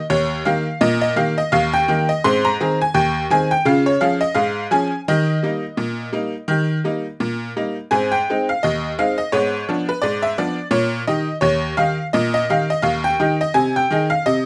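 Ragtime piano in A-flat major, this jaunty, playful clip from a longer piece moves at 85 BPM in 2/4 with a light swing on the sixteenths. A lone tack piano carries everything from 0.0 to 14.5 seconds, spanning Eb2 up to C6 with a jangly, metallic bite and a short, percussive sustain. It sits up front in a moderate studio reverb, giving the vintage instrument a natural sense of space. The harmony moves through Eb, Ab and Db, passes an Abdim7 around 9.3 seconds, and settles on Ab/C near the close. The tuning sits slightly sharp at A4 = 441 Hz, adding to the old-time charm.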